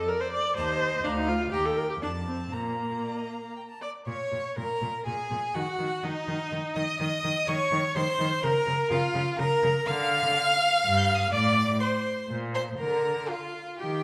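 This quick, cheerful classical-period movement for string quartet moves at 124 BPM in 3/4 with a lively, rubato feel. It is taken from a longer piece. The viola carries a rich, up-front accompaniment from the start alongside a clear, somewhat distant second violin line. The lead violin and the cello join at 0.6 seconds: the lead violin sings the melody high with vibrato and a smooth top, while the cello anchors the bass with a soft attack, expressive portamento and a close presence. The harmony turns from Bb major to Bb minor at 4.1 seconds, then brightens back to Bb major at 9.9 seconds. A wet recital-hall reverb surrounds the four focused, bowed players.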